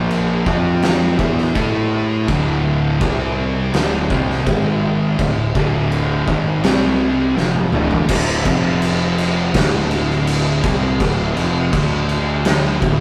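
A straight 4/4 groove at 83 BPM drives this hypnotic, sludgy stoner and doom metal excerpt in D minor, led by an oversized low-tuned acoustic drum kit sitting up front with a punchy kick, medium-tuned snare, toms and crash, its saturated, gritty tone rolled off at the top in a bright stone room. Two thick fuzz guitars play dark, distorted picked riffs in the background, joined by a warm, double-tracked and very quiet third, while a warm fingered electric bass adds overdriven fuzz underneath. A drum fill from 7.4 to 8.1 seconds marks the shift into a new section, where one guitar drops out, all under light reverb in a rough rehearsal-room sound with tube saturation.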